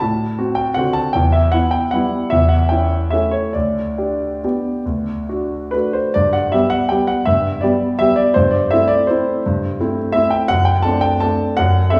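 The recording sits the listener further back in a recital hall, with a generous, wet reverb and a touch of small-room ambience around the instrument. A solo concert grand piano carries this graceful, sparkling classical waltz in three, played with a flexible rubato that lets the pulse breathe. The piano sounds warm, intimate and natural, placed up front with deep bass, short sustain and audible action noise that brings its mechanism close. Spanning D2 to A5, the harmony opens on D7 and moves through Em and A7/E toward a D chord at 4.9 seconds. At 6.2 seconds a new section settles onto G, then passes through Am7/G to D7/F# by 10.5 seconds, and the passage is cut from a longer piece.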